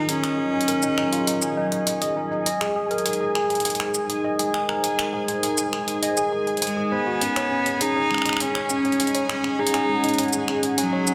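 An eerie, cerebral IDM passage, cut from a longer piece, sits in a moderate echo-chamber reverb at 101 BPM in straight 4/4, tuned to A4 = 436 Hz. A detuned sawtooth analog pad holds soft-attack chords with chorus underneath, its filter sweeping across the full 11.1 seconds as the harmony moves from Ebm7 to Ab13 and then to Dbsus4. Up front, a worn, slightly out-of-tune tine electric piano plays arpeggios through a lightly overdriven combo amp, coloured by phaser, low-pass filter and dub echo. A bright, nasal bowed cello carries the melody with light vibrato and dub echo, playing from the start until 2.2 seconds and returning at 6.6 seconds. A resonant stepped-filter texture bubbles with chorus and its own reverb, while a gritty, pitched-up, compressed jungle sampler-style kit of finger snaps, hi-hat and shaker sits forward in studio reverb.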